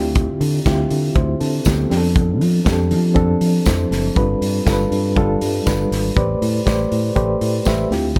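A dry, close-sounding disco excerpt in A minor at 120 BPM, danceable and driving, moving through Dm11, F6, G7 and Am11. A mellow, reedy electric piano with a fast tremolo sits up front over a dark, round, punchy fingered bass. A studio drum kit joins at 0.2 seconds with a punchy kick, a medium-tuned snare, hi-hat and a pumping room sound, while a jingly tambourine rides in the background.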